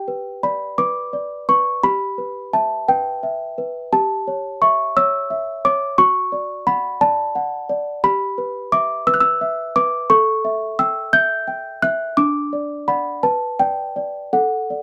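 A moderately ambient booth sound frames this dreamy, innocent classical lullaby in D major, cut from a longer piece, where a small solo celesta, bell-like, delicate and up front, plays from 0.0 to 14.8 s in a rubato 6/8 at 58 dotted-quarter beats per minute, ranging from D4 to G6 over gently shifting chords that end on D/A.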